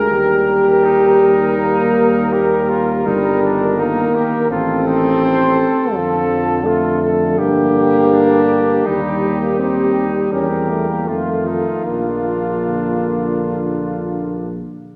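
The distant, roomy French horn sits up front with a mellow accompaniment, joined by a prominent bass trombone carrying the bass line with light vibrato, in this noble brass quintet passage in Bb major at 82 BPM, played with rubato and uneven beats. Above them, a soft-attack trumpet sings the melody from the background while a second trumpet adds a distant second line, and a warm, smooth-topped trombone fills in the middle. The harmony moves from Eb through diminished and minor chords to an F7 that resolves on Bb at 11.8 seconds, all set in a wet concert hall reverb with lossy compression artefacts in this excerpt from a longer piece.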